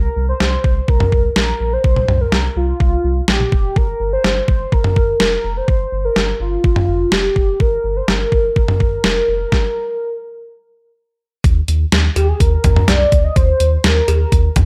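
A velvety, warbling synth lead carries the melody from the start with chorus and slapback echo, over a round, deep analog bass, in a cool, nocturnal synth-pop fragment at 125 BPM in straight 4/4. At 0.4 seconds an up-front, detuned 8-bit drum machine enters with a thumpy kick, medium-tuned snare, hi-hat, toms and cowbell, sounding sampled and re-recorded in a small room. The harmony moves from C5 to Gm, a stop arrives at 9.5 seconds, and a new section opens on Eb5 at 11.4 seconds, all in a dry mix with little reverb.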